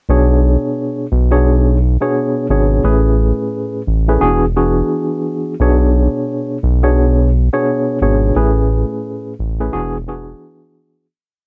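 A dry, cassette-worn home recording gives this gritty, tough boom-bap hip-hop piece its swung, dusty character. Up front, a slightly out-of-tune tine electric piano played through a combo amp pulses with fast tremolo, its chopped chords repeating like a sampled loop. Beneath it, a round analog bass blends sawtooth and sine tones with ring modulation and transformer saturation, playing a dark, looped line with chromatic approach notes until 10.3 seconds, while the whole piece fades out from 8.4 to 11.1 seconds.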